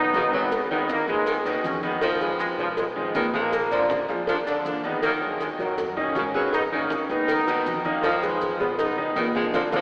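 A bright, punchy trombone section carries the melody from the very first moment, over a brilliant, open upright piano and a growly, pizzicato upright bass in this passionate, driving salsa cut from a longer piece, moving at 160 BPM in a straight 4/4. Just after, at 0.1 seconds, a clear saxophone section joins with a second line beneath the trombones. Low-tuned, ringing congas and a tight, high-tuned cowbell play very quietly, with grainy maracas in the background. The harmony circles through Ebm, Abm, Fm7b5 and Bb7, giving the tune a dark, urgent pull. The trombones stay up front with a light vibrato and a smooth top. The whole band lands an accent at 9.5 seconds, all of it bathed in a long, wet cathedral reverb with a lo-fi AM radio sound.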